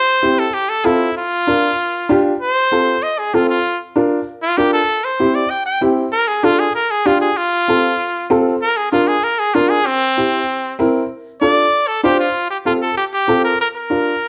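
In a straight 4/4 latin groove, this sunny, joyful excerpt from a longer piece pairs a bright, up-front trumpet, singing with vibrato and a smooth top in a pop style, with a woody, boxy upright piano whose short sustain and audible action noise give the accompaniment an intimate feel. The trumpet takes a solo from 2.4 to 12.4 seconds over chords that cycle through F, Bb, C and Dm before moving to an Fadd9 and a closing Bb. A moderate large-studio reverb surrounds the pair, and the sound stays soft at the very top.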